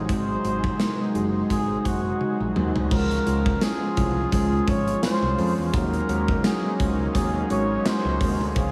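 A glossy, romantic slice of 1980s-style pop in Db major at 85 BPM opens on soft, round electric-piano-like synth keys with chorus, a brassy, nasal analog pad with chorus and vibrato sitting in the background, and a bright, direct picked electric bass. Almost at once a flugelhorn takes the melody, its smooth top and light vibrato carried on tape echo, while a gated 80s drum kit arrives up front with a punchy kick, medium-tuned snare, bright cymbals, hi-hat, tambourine and toms. The 4/4 groove carries a gentle swing on the sixteenths, and the harmony moves from Ab7 to Dbmaj7 at 2.9 seconds and then to Ab9sus4. A drum fill at 2.2 seconds leads into that new section. The whole mix is soaked in a huge ambient reverb, giving the fragment a dreamy, spacious glow before it breaks off.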